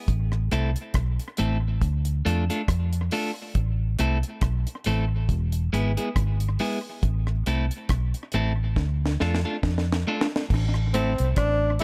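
A dark, round, foam-muted bass and a dry, deep reggae drum kit with a high-tuned snare and analog delay open this meditative roots reggae excerpt at 69 BPM in A harmonic minor. They are joined at 0.5 seconds by a slightly broken-up, tape-echoed electric guitar over Am, Dm and E chords, and after a drum fill a breathy tenor saxophone with vibrato enters at 10.9 seconds in an echo-heavy small room.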